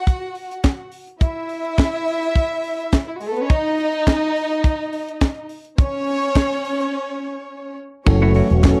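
A dry, close 1970s-style studio sound with light reverb frames this joyful, danceable disco excerpt, which opens on a rich, bowed chamber violin section with smooth vibrato and a tight funk drum kit with a high-tuned snare, crash, hi-hat and tight kick, both up front, while very quiet, crisp group handclaps join at 0.6 seconds. After a break from 6.9 seconds, the full band arrives at 8.1 seconds on an F#m7 chord: a bright picked electric bass through an envelope filter, a clean, compressed semi-hollow guitar, a mellow tine electric piano with analog chorus, and a dark, distant French horn section holding sustained chords in the background.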